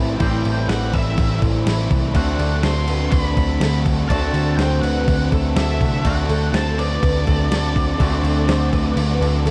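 A round, punchy, foam-muted bass sits up front in this blissful, wistful shoegaze and dream pop excerpt, moving at 123 BPM in a straight 4/4 around D mixolydian as the harmony shifts from Am7 to D7 at 2.2 seconds. Beside it, a crisp 8-bit drum machine with a thumpy kick, a medium-tuned snare and crash cymbal gives the track its sampler-style pulse, and the kick and snare drop out at 9.0 seconds. Three riffing guitars layer beneath: a very quiet, double-tracked overdriven guitar, a lo-fi garage guitar coated in lush chorus, and a clean, twangy fingered guitar trailed by reverse reverb. Above them, an octave-fuzz lead guitar carries the melody through distortion and analog delay. Joining with the chord change, a bright, boxy twelve-string acoustic adds shimmering, octave-doubled arpeggios in the background, wrapped in ensemble chorus and analog delay. The production is dark and warm, with little reverb.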